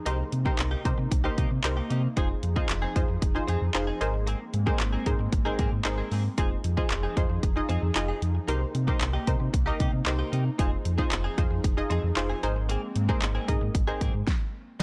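Dance-pop in F minor at 114 BPM, bittersweet yet confident, cycling through Cm7, Fm7 and Abadd9 in a clip cut from a longer piece. An up-front electronic drum kit with a punchy kick, fat snare, handclaps, hi-hats and crash plays alongside a deep sine sub bass with octave, while wave-folded sawtooth chord stabs with a filter pluck and a breathy, nasal background pad both pump against the sidechain under chorus. A direct-recorded clean electric guitar plays a picked, compressed riff through analog chorus, set in digital ambience, before everything stops at 14.3 seconds.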